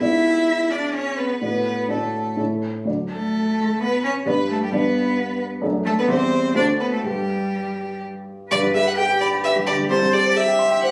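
Captured on a phone in the room with a light touch of studio reverb, this lively, spirited excerpt from a quick classical-period movement for piano trio moves in 3/4 at 122-136 BPM with a rubato feel, starting in D major and turning to G major at 5.6 s. A clear, smooth violin with vibrato sits up front carrying the melody, while a rich cello adds an expressive second line with soft attacks, vibrato and portamento. A dark, mellow baby grand piano supplies intimate accompaniment with short sustain and audible action noise, and a new section begins at 8.5 s.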